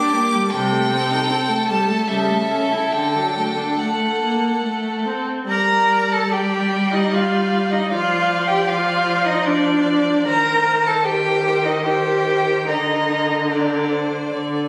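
Captured on a phone in the room with a moderate stage reverb, this yearning, melancholic fragment of a slow romantic string quartet movement in 3/4 sways with rubato as a rich, smooth first violin sings the melody over a clear, focused second violin line, an up-front viola accompaniment and a bowed cello bass entering at 0.5 s, every player shading the sound with vibrato.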